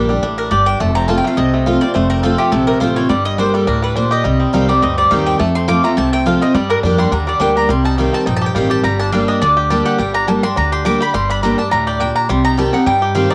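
Lonesome and rustic, this short bluegrass passage moves at a brisk 209 BPM in 4/4 with a gentle swing, set in G minor and tuned slightly low to A4 = 438 Hz. The twangy, fingerpicked banjo carries the melody with a percussive bite and a cassette-tape coloring, while the full-bodied dreadnought acoustic guitar sits up front, picked with audible finger squeak. Underneath, the upright bass gives a woody, thumpy pizzicato pulse from gut strings. The bright, double-strung mandolin enters at 0.4 seconds with stabs run through an analog delay and stays in the spotlight as the soloist. The chords circle Gm, F and Cm across two passes of the same section, heard in a small room with light reverb and the homespun grain of a cassette home recording.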